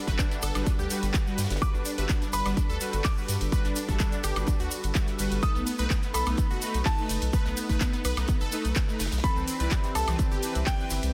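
Uplifting and hopeful, this short progressive house excerpt at 126 BPM in G major moves from Gmaj7 through B7 to Cmaj7, with a punchy, up-front electronic kick, a deep, saturated sub bass, a dark analog pad, bright detuned unison pluck arpeggios with phaser and dub echo, smooth supersaw stabs, an overdriven deep house kit with metallic hats, claps, ride and woodblock, a very quiet acoustic kit of hi-hat and snare, a grainy tube shaker, and a present grand piano melody with tape echo entering at 1.6 seconds, all over sidechain pumping on the synths and bass in a dense, heavily limited mix.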